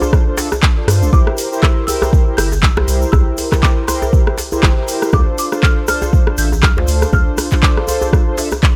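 Hypnotic and earthy, this afro house excerpt at 120 BPM in D minor rides a lightly swung groove. A deep, up-front electronic kick sits beneath an overdriven afro-pop kit of handclaps, rim clicks and metallic hats, with tight, cracking djembe and a grainy, distant egg shaker. Mellow, detuned synth brass stabs pump with chorus and delay over Dm7 and C7, while a woody marimba with tape echo drifts in the background. A round analog bass enters at 0.9 seconds and pumps along until 7.2 seconds, all set in a studio reverb.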